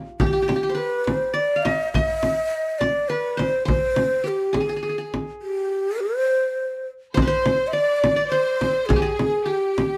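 Recorded as a band playing live in one room with moderate studio ambience, this passionate, festive Arabic maqam ensemble piece in triple metre is cut from a longer performance. A breathy, hollow end-blown ney carries the melody up front from 0.2 seconds over a deep, close and dry frame drum struck with hard hands, while a bright-edged plucked qanun with triple strings plays a second line from the very start. At 7.1 seconds, a rich, distant bowed violin section with vibrato joins as another second line.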